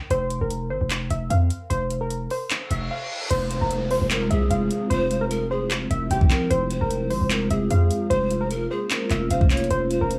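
A half-time trap groove at 150 BPM in 4/4 drives this melancholic, brooding hip hop excerpt in F harmonic minor, built on an up-front electronic kit with a knocking kick, metallic hi-hats, handclaps and crash, under a heavy, aggressive distorted 808-style bass. A lo-fi, warbling pluck carries the melody through chorus and tape echo from the start, while a reverse cymbal and downlifter lead into a brief break that ends at 3.3 s, where the harmony settles on Fm. A breathy bamboo pan flute with vibrato and chiff adds a second line from 3.5 s, and an ethereal, airy pad with ensemble chorus and its own reverb sustains chords beneath, the mix sitting in a small room's moderate studio reverb.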